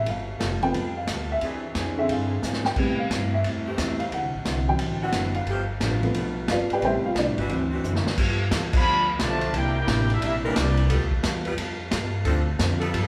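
Played live in one room under a lush large-studio reverb, this joyful big band swing at 177 BPM in G mixolydian opens with a mellow, boxy, slightly detuned upright piano solo over growly pizzicato upright bass, a clean, picked hollow-body electric guitar in the background, a vintage drum kit with punchy kick, dark cymbals and short fills, and sustained chords from a warm saxophone section, until a band accent at 8.7 s brings in a tight trombone section and a clear trumpet section carrying the melody with light vibrato from 8.8 s.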